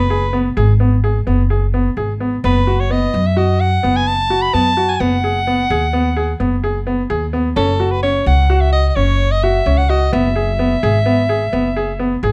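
Pulsing in an uneven 11/8 with a straight feel, this urgent, hypnotic stretch of contemporary chamber music sets a clear soprano saxophone melody, sung with a soft attack and light vibrato, over a woody pizzicato upright bass and brilliant baby grand piano arpeggios, all three close and up front in detailed sound with a light touch of reverb.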